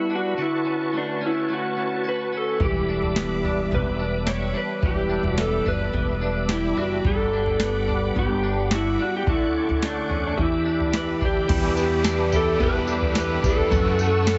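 Dream pop with a melancholic, haunting mood, cut from a longer piece in a steady, straight 4/4. From the first moment, an up-front electric slide guitar carries the melody, slightly broken-up and played with fingerpicks, its notes trailed by digital delay. Beneath it a tonewheel organ holds sustained chords with key click, chorus vibrato and a slow rotary speaker, while a twangy clean electric guitar picks arpeggios through ensemble chorus and delay. At 2.6 seconds a woody, growly pizzicato upright bass and a booming analog drum machine enter, the machine giving a deep kick, tonal snare, tambourine, toms and crash cymbal with a tape-warm character. At 11.5 seconds a double-tracked, overdriven guitar adds accompaniment with tremolo and lush chorus, and a dark, very quiet vibraphone with slow motor vibrato rings faintly in the background. The whole mix sits in a huge ambient reverb yet sounds heavily compressed and radio-like, its top end dulled.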